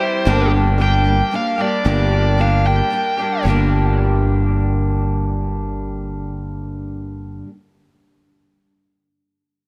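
This short excerpt from a longer piece has a dark, dry production with little reverb, giving it a close, dusty feel. It is reflective folk rock with a heartland rock edge, moving at 112 BPM in a straight 3/4 in G minor, and it rests on a G minor chord from 0.3 seconds. A bluesy overdriven lead guitar opens with a short solo that runs until 3.4 seconds, its distorted tone colored by analog delay. Underneath, a picked twelve-string acoustic guitar rings with a shimmering, octave-doubled sparkle and fresh strings, and a finger squeak can be heard. An electric guitar through a small old amp plays a twangy, slightly broken-up riff with a lo-fi, compressed bite. A fingered electric bass sits up front on a low G, growly and punchy, and it is the loudest part in the mix.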